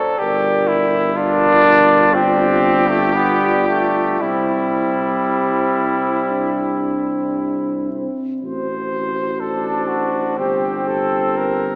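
A brilliant, up-front trombone carries the accompaniment in this serene, hymn-like brass band passage, cut from a longer piece, moving at a slow, rubato 56-63 BPM in 4/4. A clear cornet carries the melody with light vibrato, a mellow French horn section with a vintage tone takes the second line, and a dark, close-miked euphonium fills out the accompaniment. A soft-attacked tuba with a smooth top enters on the bass at 0.2 s, and the whole ensemble sits in a wet church reverb with a small-speaker sound.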